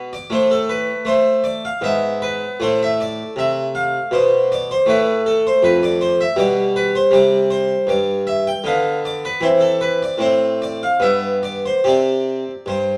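This baroque-style classical suite movement for solo harpsichord, heard as a short section lifted from a longer piece, carries a grave yet flowing mood in triple metre. The playing moves with a supple rubato across the full 13 seconds, the lone harpsichord sitting up front with a brilliant, airy tone drawn from three sets of strings in the Flemish manner. It ranges from F2 up to G5, and its harmony begins in a minor key and turns toward a brighter major from 4.9 s, passing through chords such as E/G#, Am, F/A, G/B and Dm6 before settling on a bare C5. A reverberant stone room lends a wet reverb of about one second. The sound has the worn character of an old cassette tape, with a warbling pitch drift that gives the recording a faded, wavering quality.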